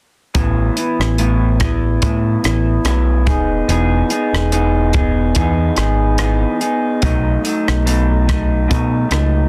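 A dense, heavily limited mix with light reverb frames this sunny, laid-back indie and bedroom-pop excerpt at 72 BPM in E major. A lo-fi, slightly broken-up electric guitar through a small old amp carries the Asus2, Emaj7 and B7 chords with subtle chorus and warbly pitch drift, while a round, dark picked dub bass sits up front. A dry compact cocktail kit adds hi-hat, rim click and a punchy kick over a light swing on the 16ths.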